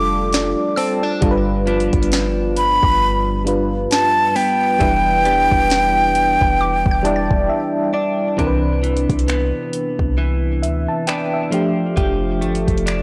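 This contemporary R&B piece in C major moves at a slow, romantic 67 BPM in 4/4, its sixteenths swung for a dreamy, unhurried sway. A breathy jazz flute carries the melody up front, soft in attack with vibrato, lifted highs and a digital delay trailing its expressive lines, until it drops out at 7.9 seconds. Beneath it, a vintage FM electric piano warbles with tremolo and a mellow noise layer, adding fills along the way. A direct-recorded clean guitar picks compressed arpeggios through analog chorus and delay, while a deep, boomy 808-style bass gives sine-like, dark low notes that decay. The drum kit, entering at 0.3 seconds, pairs a soft kick and sharp snare with finger snaps and hats under overdrive and 12-bit sampler grit, and a woody, round synth pluck glints in the background through chorus, phaser and delay. The chords drift from F69 through G7 and Em7 to Cmaj9 at 8.4 seconds, all set in light reverb within a blown-out, overdriven mix.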